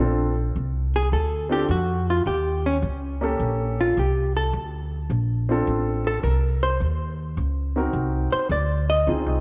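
A moderate echo-chamber reverb gives this short cut from a longer small-group swing and bop piece a roomy yet up-front sound, relaxed and swinging at 106 BPM in Bb major. A woody, thumpy pizzicato upright bass and a baby grand piano with a natural, short-sustained tone carry the accompaniment throughout. At 1.0 s a dark, clean hollow-body electric guitar enters with a fingered, compressed melody and slapback echo over harmony that moves from Bbmaj9 through Eb7#11 and Dm7 to Ebm7 and Cm9b5.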